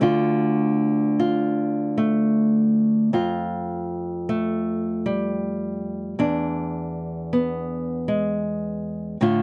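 A fingerpicked nylon-string guitar plays alone through this short folk excerpt, its small, up-front tone sitting close and intimate in a dry 1970s-style studio sound with light reverb. In D minor at 78 BPM with a rubato feel, the wistful passage moves from Dm to Fadd9 at 3.1 seconds and settles on E7 at 6.2 seconds, spanning D2 to F4 before it is cut off at 9.4 seconds.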